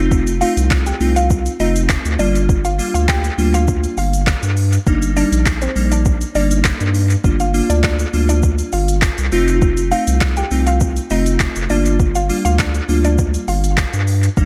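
Glassy digital keys and a thick, saturated sub bass open this confident, energetic dance-pop excerpt in G minor at 101 BPM, both pumping under sidechain while the keys shimmer with chorus and tape echo over chords moving through F7, Gm7 and Ebmaj7/G. A tape-warm, smooth R&B drum kit joins at 0.1 seconds with a soft kick, woody snare, handclaps, shaker and smooth hats, sitting up front and re-recorded in a large room. At 0.4 seconds a round, mallet-like FM pluck carries the melody up to G5, colored by phaser, chorus and echo in a lightly reverberant, echo-heavy mix.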